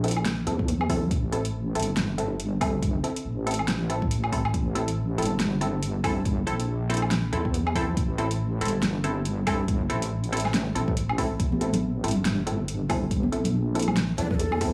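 A moderate spring reverb gives this brooding, cavernous deep dubstep excerpt a small-room depth as it sits on a single A minor chord in A phrygian at 140 BPM, with a half-time feel and a swung 16th-note lilt. An up-front, dark wobble bass of sawtooth and sine with chorus anchors the low end beneath muted, detuned chord stabs with ring modulation, a filter pluck, chorus and dub echo, while a tape-warm drum kit brings a fat snare, metallic hi-hats and woodblock. An electronic kick joins at 0.6 seconds, ringing congas played with soft hands enter in the background with dub echo at 11.5 seconds, and a breathy, mellow ney with vibrato slips in at 14.2 seconds just before the cut.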